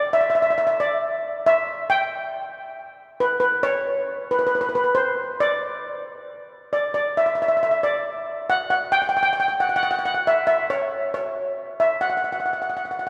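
A carefree, sunny calypso passage taken from a longer piece, carried by a lone lead steel pan from 0.0 to 13.1 seconds, staying between B4 and G5 over a light sixteenth-note swing in 4/4. The pan's tone is metallic, shimmering and airy, struck with medium rubber sticks and sitting up front, tuned slightly under standard pitch at A4 = 438 Hz. A long, wet church reverb surrounds it, giving the recording a spacious hall sound.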